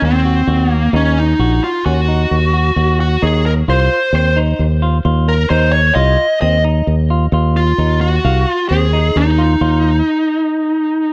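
A dark, lightly reverberant mix opens this driving, intricate progressive instrumental excerpt in 5/4 at 131 BPM, where a growly, up-front fingered electric bass anchors the low end while a clean semi-hollow electric guitar plays fingered arpeggios over an Ebm to F7(no3) progression and a smooth, overdriven picked lead guitar carries the melody through tape echo, until the band stops at 10.1 s and the lead continues alone to 11.1 s.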